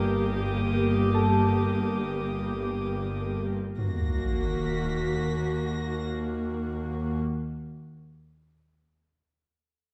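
A moderate scoring-stage reverb surrounds this tense, uneasy stretch of cinematic suspense score in free time, where an intimate, up-front viola section and a pure, floating double bass section play soft-attack sul tasto bowed lines over a cello section sitting in the background, while a ringing, fingerpicked Celtic harp and a close, vibrato-laden violin section add texture over G minor until the harp stops at 3.8 seconds, when the harmony turns to E-flat minor and a huge, dark sub drop lands as an impact, the violins dropping out at 6.0 seconds.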